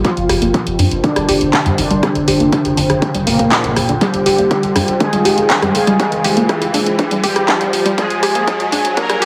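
Dramatic and hypnotic, this melodic techno build-up, cut from a longer piece, rides a juicy, resonant polysynth melody with dub echo and sidechain pumping over a bright, detuned pad holding sustained chords on Fmadd9/G, while a round analog pluck spins arpeggios in the background. A layered, tape-warm electronic kick, an up-front analog drum machine with handclaps, hi-hat and rim click re-recorded in a large room, and a tight, dark sawtooth sequencer bass keep a straight, driving 4/4 pulse. Filter sweeps run through the polysynth, pad and pluck for the whole stretch as a background riser climbs from 0.3 s, all set in an echo-heavy mix with moderate plate reverb.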